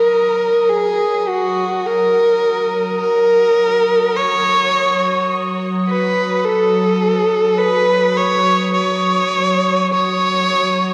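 Up front, a rich electric violin carries the melody between F#4 and C#5 with vibrato and portamento, its bowed, focused tone bathed in shimmer reverb and tape echo. Beneath it an organ-like drone holds F#3 with a detuned, chorused unison that fades in across the 10.9 seconds, while a glassy, ethereal glass harmonica hovers on D#6 in the background, its pure tone beating. This serene ambient excerpt, cut from a longer piece, sits on a single F# major chord at 52 BPM in 3/4, set in an echo-heavy mix with a wet spring reverb.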